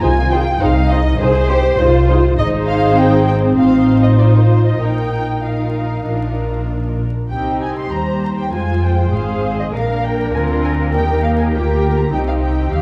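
This is a quick classical-period movement for string orchestra, graceful and spirited, with a rubato feel in common time, cut from a longer piece. A muted studio violin section carries the melody con sordino with light vibrato and a smooth top, while a lush symphonic violin section plays a second line higher up, reaching C6. Beneath them, a close, soft-attacked viola section supplies accompaniment, and the cello and double bass sections share the bass, with the double bass sitting up front as the loudest of the five. All five sections are bowed and muted and play together from 0.0 to 12.8 s, giving the ensemble a veiled, shadowy color. The harmony moves from Ab/C through F7/A, Bbsus4 and Cm to Fm, Bb and Eb before returning to Cm at 12.1 s, all set in a wet recital hall reverb with a dark, warm production and vinyl crackle.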